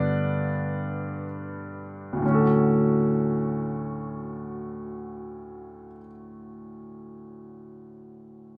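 A clear, open baby grand piano sits up front in this heartfelt, swaying pop fragment, cut from a longer piece and played in free time in D major. The piano carries the accompaniment throughout, ranging from D2 to D5 across its 8.6 seconds. It opens alone on a G chord, slowing down over the first 2.2 seconds before settling onto Dmaj7 as the next section begins. The performance was captured live in one room, with a wet studio ambience and a short reverb tail of 0.5 seconds adding gentle depth around the instrument. The result feels intimate and unhurried, like a tender moment lifted from a longer song.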